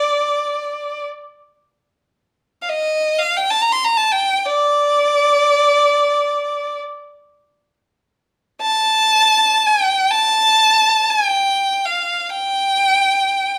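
Unmeasured and in free time, this Arabic maqam piece unfolds in D maqam kurd with a hypnotic, longing mood. A single bowed violin carries the whole 13.6-second passage as a solo, moving between D5 and C6. Its tone is rich and focused, colored by vibrato, and it sits up front in the mix. A moderate large-studio reverb with an RT60 of 0.8 s surrounds the instrument, giving the sense of a live performance captured in one room. The passage is cut from a longer piece, so it feels like a glimpse into an ongoing performance.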